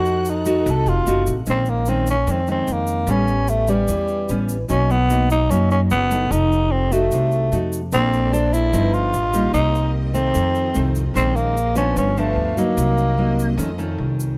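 Close, detailed and nearly dry, this melancholic, smooth bossa nova excerpt moves at 149 BPM in a straight 4/4. It is led up front by a growling tenor saxophone whose breathy, raspy subtone and scooped notes carry the melody, opening with a brief solo turn. Fingerpicked nylon-string guitar supplies classical-style accompaniment over woody pizzicato upright bass, and an egg shaker adds grainy brightness, while a soft, bowed string section sits in the background with sustained sul tasto chords, dropping out at 1.5 seconds and returning at 7.9 seconds beneath jazz harmonies such as F7b9 and Bbmaj9.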